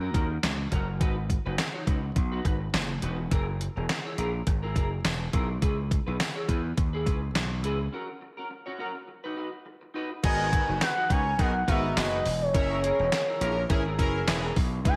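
Lightly reverberant and tape-saturated, this danceable, slick early-eighties boogie funk excerpt at 104 BPM is driven up front by a gritty, overdriven slap bass and a thumpy, detuned 8-bit digital drum machine, joined by a clean semi-hollow electric guitar riff through analog chorus and slapback echo and a jingly tambourine in the background, until a break at 7.9 seconds gives way at 10.2 seconds to a smooth gliding portamento lead with phaser, a present horn section with light vibrato, and a glossy chorused polysynth.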